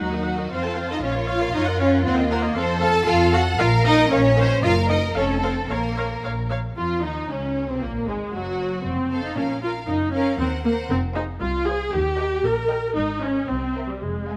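A full string orchestra sounds together from the very first beat of this quick classical-period movement in 2/4 at 116 BPM, restless and urgent in Bb minor, tuned slightly low, and cut from a longer piece. The first violins carry the melody with a clear, focused tone and a smooth top, while the second violins play a warm, expressive line beneath them, both bowed with vibrato and a lush ensemble sheen. The violas give the accompaniment a rich, up-front presence, bending between notes with portamento, and the cellos and double basses hold down the bass with an even, smooth sound, the basses also sitting close and full. The same phrase is heard twice, the second time turning toward F minor at 10.9 seconds and closing on a C7 chord at 13.5 seconds. Close, detailed microphones and light reverb keep the playing crisp and intimate.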